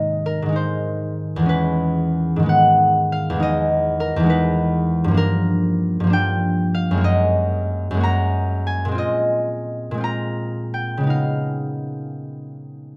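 Classical solo harp, dreamy and peaceful, moving in a rubato 6/8 at roughly 54-69 BPM and tuned slightly high at A4 = 441 Hz. The fingerpicked concert harp plays alone throughout this short passage cut from a longer piece, its ringing strings reaching from E2 to Bb5 as the harmony drifts through lush chords such as Abmaj7, Emaj7 and Gb69 before settling on Db9 near 11.1 seconds. Close, detailed microphones place the harp up front in a dry, intimate sound with little reverb.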